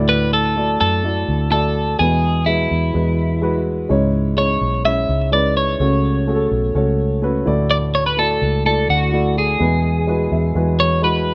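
At a straight 126 BPM in 4/4, this short cut from a longer piano-driven pop piece moves with a hopeful, uplifting lift. A dark, mellow upright piano with a woody tone carries the accompaniment from the start, bathed in plate reverb, and closes the passage with a fill at 10.1 seconds. Beneath it, a vintage muted fingered electric bass sits up front with a round, punchy, foam-muted sound that stays low in the register. From 0.1 seconds a clean, compressed twelve-string electric guitar picks out the melody, its doubled strings also touched with plate reverb. The chords cycle through Dadd9, Eadd9, C#m and F#m before returning to Dadd9 and Eadd9, and the whole thing has the rough, close feel of a home demo in a small room.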